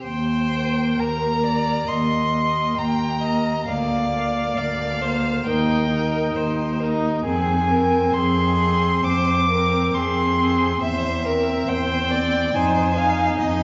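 The uneven, rubato pulse drifts around 67 BPM in 4/4, carrying this slow, elegiac classical string quartet passage in Eb major through harmonies that move from Eb toward Fm7. A rich first violin sings the melody up front with vibrato, the second violin adds a clear, focused line from further back, the viola supplies smooth, even accompaniment, and the cello holds a close, low bass. All four bowed parts play with vibrato, heard from deep in a reverberant recital hall whose long tail and muted top end deepen the melancholy.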